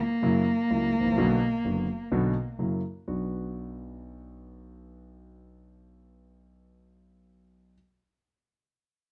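A nasal, woody bowed cello opens this nostalgic, elegant tango fragment up front with vibrato and portamento as a second line, joined at 0.2 seconds by a concert grand piano accompaniment with deep bass and short sustain, moving at a rubato 127 BPM in B harmonic minor over F#7 and Bm chords, before the cello drops out at 2.6 seconds and the piano carries on to 7.7 seconds in a dark, warm production with light reverb.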